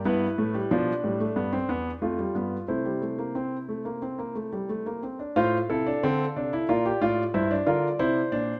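Classical in a baroque style, this is a four-part fugue for solo grand piano in F major, with a lively, joyful mood at 91 BPM in a straight 4/4. The concert grand carries every voice alone from 0.0 to 8.6 seconds, spanning E2 up to F5, with a warm tone and a deep bass that sits up front. The harmony moves from G7 to C in the opening phrase, then shifts at 5.4 seconds into a new passage built on F/A, Gm7 and C7. Close, detailed microphones capture the instrument clearly, while a moderate recital-hall reverb of 1.4 seconds gives it a sense of space. The recording is cut from a longer piece.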